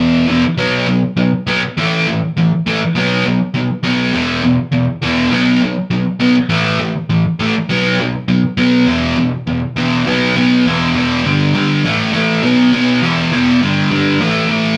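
A sludgy, overdriven electric guitar, picked, double-tracked and placed up front, carries this entire rowdy, upbeat punk clip, cut from a longer piece, on its own from 0.0 to 14.8 s. It drives along at 203 BPM in a straight 4/4, working through power chords that stay between E2 and B3. The first stretch cycles through E5, B5 and A5. From 10.1 s the changes arrive more often, and G5 joins the E5, A5 and B5 movement. The rough rehearsal-room sound and a moderate studio reverb give the playing a raw, live-in-the-room edge.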